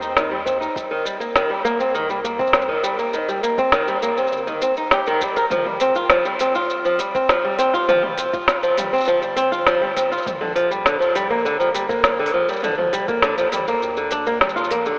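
A fingerpicked flamenco guitar leads up front with acoustic arpeggios over Cm, Eb6, Fsus2 and Bb6, colored by tape echo, in this playful, pastoral folktronica excerpt at 101 BPM in a straight 4/4. Close behind, an organic electronic kit with a woody snare, crisp hats, shaker and toms sits forward, while a soft electronic kick entering at 0.5 seconds and a round, sustained sine sub bass stay in the background. The whole mix is dreamy and soaked in a huge ambient reverb, filtered through a telephone-like sound.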